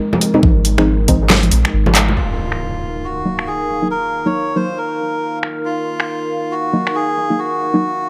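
A dark, detuned analog pad with chorus opens this cavernous, meditative deep dubstep excerpt at 138 BPM in a swung half-time feel in Eb minor, soon joined by ringing, low-tuned congas in dub echo, an up-front overdriven kit of finger snaps, handclaps, bright filtered hats and a deep snare, a muted, filter-swept chord stab with chorus and dub echo, a round sub bass with tube saturation and a brief knocking overdriven kick, until a drum fill at 2.0 seconds gives way at 2.2 seconds to a reedy, breathy melodica with dub echo over an electronic impact, the room carrying a moderate spring reverb.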